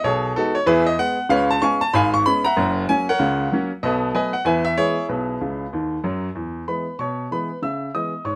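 Swinging and playful, this short cut from a longer stride piano piece moves at a brisk 190 BPM in 4/4 with a lively swing feel, set in E major and tuned slightly sharp of standard pitch. A clear, polished baby grand plays alone and up front, ranging from deep bass to bright upper notes through chords such as B13, C#7, F#7 and B7 before settling back on E, with a grand piano fill from 5.4 to 6.4 seconds leading into a new section. Moderate studio reverb gives the present piano tone a little space, though the overall mix keeps the rough character of a home demo.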